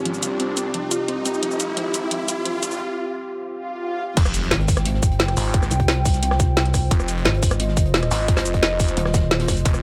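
Tense and mechanical, this dark technical drum and bass excerpt opens with a moody wave-folded analog pad, a warbling lo-fi pluck in the background, a snarling, growling distorted saw bass and a layered kit of woody snare and metallic hats under a filter sweep, electronic riser and swell. At 4.2 seconds it drops with a tight up-front electronic kick, a very quiet gritty breakbeat kit and an impact, before a heavy pulsing pluck wobble bass joins at 4.5 seconds.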